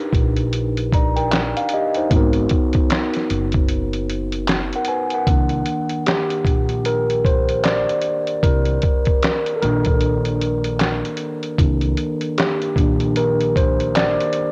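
Lo-fi hip hop in C minor at 76 BPM, this reflective, hazy excerpt moves in 4/4 with a lazy 16th-note swing and a slightly sharp tuning. A mellow tine electric piano sits up front, its clean, direct tone softened by cassette tape and a low-pass filter as it moves from a rootless Cm7 to Abm7. Underneath, a pizzicato upright bass with steel strings adds a woody, growly low end, while a compressed, pitched-down sampler-style kit supplies a thumpy kick, a medium-tuned snare, hi-hat and handclaps, muffled and up front with its own cassette coloring. After a break from 3.7 to 5.3 seconds, the electric piano takes a solo over a Cm9 chord that runs to the end at 14.5 seconds. A moderate spring reverb and the home cassette recording give the whole piece a hazy glow.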